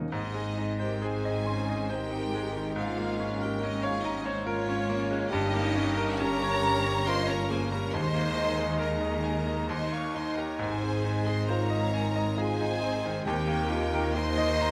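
In a rubato 3/4 at 68 BPM with uneven beats, this lush, lyrical romantic movement in Ab major, cut from a longer piece, sets an intimate, up-front baby grand piano carrying the melody, its action noise audible, alongside a focused, vibrato-rich chamber violin section. Beneath them, a second violin section and an airy, hollow flute group trace a soft second line, while a smooth symphonic viola section and a mellow bassoon, entering at 1.0 seconds, fill in the accompaniment over sustained French horn chords and a bowed bass of cellos and an intense double bass section. Very quiet timpani on calf heads sound at the opening and return at 7.9 and 13.3 seconds, all set in a moderate scoring-stage reverb captured by close, detailed microphones.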